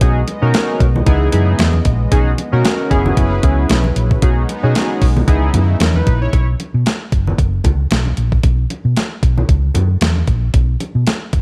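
Feel-good, danceable early-eighties boogie funk at 114 BPM in B major opens with a glossy, mellow chorused polysynth and a bold, brassy analog pad with a soft attack and vibrato in the background, both over a dark, round hollow-body fingered bass up front, a thumpy, overdriven 8-bit drum machine and ringing, soft-handed congas, moving through B6, C#m9 and F#9sus4 chords. The pad drops out at 6.3 seconds and the polysynth at 6.5 seconds, and then the dry bass, drums and percussion carry the groove through chords of Bsus24 and F#sus4, the congas stopping at 11.2 seconds and the bass and drums continuing to 11.4 seconds.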